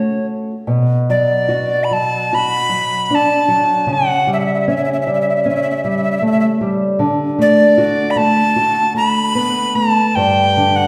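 Set at 76 BPM in 4/4 but played with a free, rubato feel, this short fado excerpt in B minor carries a mournful, passionate mood, with tuning pitched to A4 = 438 Hz. A breathy, bright tenor recorder sings the melody up front from start to finish, its woody straight tone marked by tongued attacks, a distinct chiff and lifted highs as it moves between C#5 and B5. Beneath it, a nylon-string guitar plays the accompaniment throughout, thumb-plucked and small in scale, with audible finger squeak on the strings and a range running from G2 to F#4. The harmony passes from F#m through Bm7, A7/C# and D6 before landing on G5 at 10.2 seconds. Both parts sit close in a church or concert hall, wrapped in a recital-hall reverb whose 1.7-second decay lends the sorrowful line a lingering, spacious glow.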